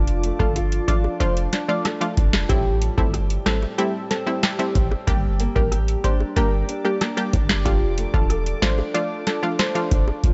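Dancehall in D minor at 93 BPM, sultry and tough, built on a booming analog drum machine with 12-bit sampler grit and a deep, boomy 808-style bass up front, while a boxy, fingerpicked ladder-braced acoustic guitar arpeggiates through delay, a gentle FM-toned synth lead carries the melody, a detuned sawtooth pluck pumps with the sidechain, tight high-tuned bongos sit in the background, and a moody, chorused ambient pad sustains Dm, Am7 and Gm chords behind it all in this dry, dark-topped excerpt.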